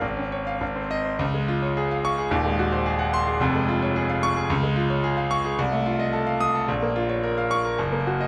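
A clear concert grand piano, up front with deep bass, long sustain and audible action noise, plays alone through this brilliant, heroic fragment of a classical virtuoso piano study in Db major, moving with rubato at 109 BPM in 2/4 across a range from Eb1 to Eb6 in a moderate recital hall reverb, its brief opening giving way at 1.2 seconds to a longer passage that runs to 8.3 seconds.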